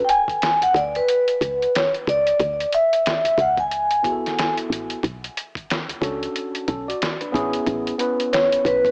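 A soft-mallet vibraphone opens this cool, smoky jazz-hop fragment in B dorian, its metallic, ringing tone mellowed by a slow motor vibrato and a tape echo, sitting up front in the mix. Almost at once a lo-fi, sampler-style drum kit joins with hi-hat, a thumpy kick and a fat snare, muffled and compressed through cassette tape, setting a 91 BPM groove in 4/4 with a 60% swing on the sixteenths. At 0.6 seconds a woody FM bass enters low, its round, dark notes striking quickly and then decaying. At 4.0 seconds a clean tine electric piano comes forward through a combo amp with a subtle chorus, filling in the harmony beneath the vibraphone line. The chords move from Bm to a rootless D6, then Bm7 and Amaj9. Light reverb and digital ambience surround a home-cassette, small-speaker sound, and the piece breaks off as if cut from a longer track.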